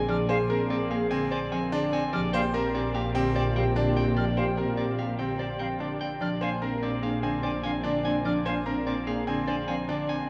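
Minimalist classical pattern music, bright and propulsive at 147 BPM in 5/4 over Bb7 and Gm7/Bb harmony, sets a twangy, slightly broken-up electric guitar melody above a mellow French horn second line, clear up-front baby grand piano arpeggios with audible action noise, lush bowed double bass section on a low Bb, dry woody folk marimba accompaniment and pure, distant flute arpeggios with vibrato, all washed in a vast, echoing ambient reverb in this short excerpt cut from a longer piece.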